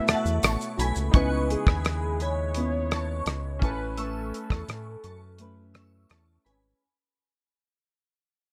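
Dry, with little reverb, this nostalgic, dreamy indie and bedroom pop fragment at 85 BPM puts a dark, tight 70s drum kit with gritty 12-bit sampler character and a round, deep analog bass up front, beneath a velvety, chorused synth lead with tape echo, a brilliant, woody upright piano, a fingerpicked flamenco guitar with finger squeak and warbly pitch drift, and a shimmering FM bell with tremolo and tape echo. A lush pad sustains only until 1.1 s, a jingly tambourine flickers near 0.4 s, and the music fades out from 1.1 s as the chords move from B7sus4 to C#m7 and Amaj9.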